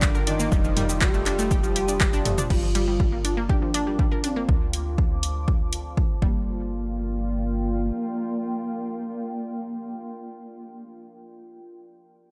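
A 121 BPM pulse in G minor sets this cinematic, dramatic melodic techno cut, with an overdriven, up-front electronic kick and a punchy analog drum machine of handclaps, hi-hat, shaker, toms and crash cymbal pumping under sidechain through a drum fill at 2.3 seconds, the machine dropping out at 5.8 seconds and the kick at 6.3 seconds. A tight, dark sequencer bass with tube saturation carries a filter sweep from 2.5 to 6.5 seconds, while a round, detuned analog pluck spins dub-echoed arpeggios and an airy, phased supersaw hovers briefly in the background. Above them an expressive, vibrato-tinged sawtooth lead with chorus and digital delay sings through to 10.8 seconds over a deep, moody, wave-folded pad, as the chords move from Gm7 and F7 through Dm7 and back to Gm7.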